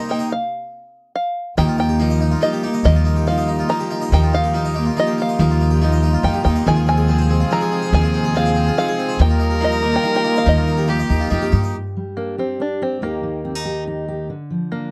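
A thumpy, woody upright bass sits up front in this nostalgic, hopeful folk excerpt in Eb major, played pizzicato and entering at 1.6 seconds after a brief stop. The open-back banjo carries the melody throughout, its fingerpicked tone mellow yet plunky, over a dark, jumbo-bodied picked steel-string guitar strung with old strings. A very quiet chamber string section holds sustained chords played sul tasto, while a harpsichord adds full, plucked arpeggios in the French style. At 6.7 seconds a single fiddle joins with a nasal, boxy second line and light vibrato. At 11.7 seconds the picked guitar, strings, harpsichord, bass and fiddle drop away, and a bright dreadnought guitar, fingerpicked and up front, takes over the accompaniment beneath the banjo. Moving at 142 BPM in a straight 3/4, the piece has a dry, close 1970s-style studio sound with little reverb.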